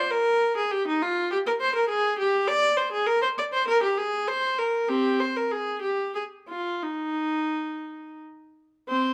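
A baroque-style suite movement for unaccompanied viola in Eb major, cut from a longer piece, moves in a radiant, dance-like 3/4 at 84-104 BPM with a supple rubato feel. A single bowed viola plays alone from 0.0 to 9.1 s, ranging from C4 to D5, with a period-style gut-string tone that is reedy and rich, touched by light vibrato. Close, detailed microphones place the player up front, and light reverb lends a soft sense of the room.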